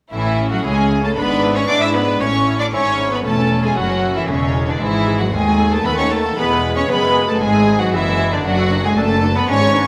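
Classical, baroque-style concerto movement in A major at 116 BPM, festive and lively, where a rich solo cello carries the melody beneath a violin section playing the upper melody with light vibrato and gut-string tone, while a close chamber violin section adds a second line, a mellow, delicate fingerpicked lute and a background viola section fill in the accompaniment, and a chamber double bass section with a distant cello section hold the bass, all set in a wet recital hall reverb across this short cut from a longer piece.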